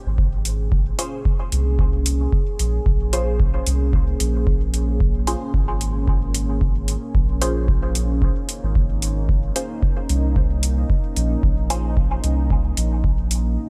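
A dry, close-sounding dub techno excerpt at 112 BPM with a light swing, its deep, hazy mood resting on a single Bbm7 chord, where a dark, detuned sawtooth pad with chorus and built-in reverb sustains beneath a round, up-front sub bass warmed by tube saturation, both pumping against the analog kick, while metallic, tape-warm hi-hats tick above and muted, filter-plucked chord stabs with phaser and dub echo drift in from 1.0 s to 12.0 s.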